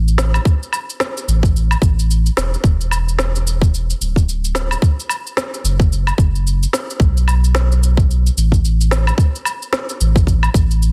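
A dry, dense and heavily limited mix opens this short excerpt of organic downtempo at 110 BPM in 4/4, with a 16th-note swing that gives it a hypnotic, meditative sway. A deep, round sine sub bass sits up front from the very start, sustained with a fast attack, while a tight, tape-warmed electronic kick pushes forward from 0.5 seconds. Further back, an electronic shaker, a woody snare and a woodblock carry a small-room character.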